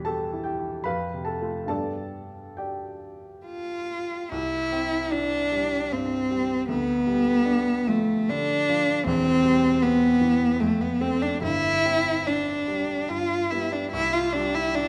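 A rich, focused cello carries the melody, entering at 3.5 seconds as a single bowed voice with vibrato, placed close and up front within a register from A3 to F4. This is a serene, tender romantic classical duo in C major, moving in 3/4 with a rubato feel between 67 and 80 BPM. Beneath it, a clear grand piano with a smooth, vintage tone and short sustain provides accompaniment from the very start, spanning E1 to B5 and sitting well below the cello in the mix. The harmony opens on E minor moving through F and G before settling into C at 4.3 seconds, then travels through G7/D, C/E, F6 and a Gsus4 that resolves to G and home to C near the close. A wet recital hall reverb with a 1.4-second decay surrounds both instruments, and the passage is cut from a longer piece.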